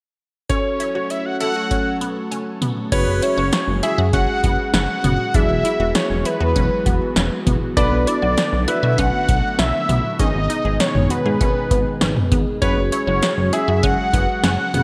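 Melancholic and cool, this synth-pop excerpt is led by a fat, phased analog lead with vibrato up front, alongside a clear baby grand piano playing a second line with delay. A mellow tine electric piano with lush chorus and a swirling phased pad sit in the background, and a squelchy resonant blip pluck plays arpeggios, all over a punchy electro drum machine with gated reverb. A glossy chorused synth bass joins at 2.9 seconds, and everything is set in bright 1980s-style digital production with plate reverb.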